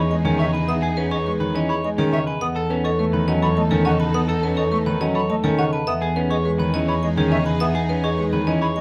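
This is classical minimalist pattern music in a straight 3/4, a hypnotic yet urgent fragment cut from a longer piece. A marimba struck with hard mallets carries the bright, percussive melody, while a silver concert flute, pure and crisp-attacked but distant, and an electric guitar at the edge of break-up, dark, picked and compressed, spin arpeggios around it. A rich cello sits up front on a single low E, bowed by one player with vibrato, a soft attack and expressive portamento. A clear concert grand piano, natural with deep bass and long sustain, supplies accompaniment from 0.1 seconds, and a lush symphonic string section holds smooth, even sustained chords in the background. The harmony moves from Emaj7 to B7/E and back to Emaj7, all wrapped in a moderate large studio reverb.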